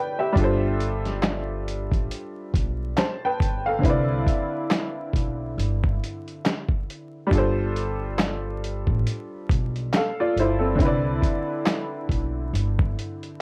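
A clear, slightly detuned upright piano opens this nostalgic, cosy lo-fi hip hop fragment at a swung 69 BPM in C major, joined at 0.4 s by a woody pizzicato upright bass with tube saturation and a gritty, compressed sampler-style soul kit of thumpy kick, medium-tuned snare, hi-hat and handclaps, all under light reverb, vinyl crackle and warbling old-tape drift as a G9sus4 chord gives way to Cmaj9 at 10.8 s.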